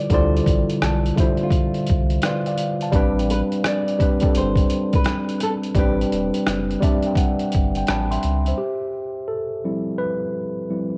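A swung 85 BPM lo-fi hip hop groove sets the pace, with a gritty, compressed, pitched-down trip hop sampler-style kit of thumpy kick, hi-hat and rim click sitting up front beside a deep, round sine sub bass colored by transformer saturation. Over Dm11 and Am11 chords, a worn, slightly out-of-tune tine electric piano comps through a low-pass filter while a fingerpicked acoustic flamenco guitar carries a melancholic, nostalgic melody, finger squeak audible beneath its filtered tone and tape echo. At 8.6 s the electric piano carries on alone over Fmaj9#11 until the cut at 11.0 s, all captured as a home cassette recording with light reverb.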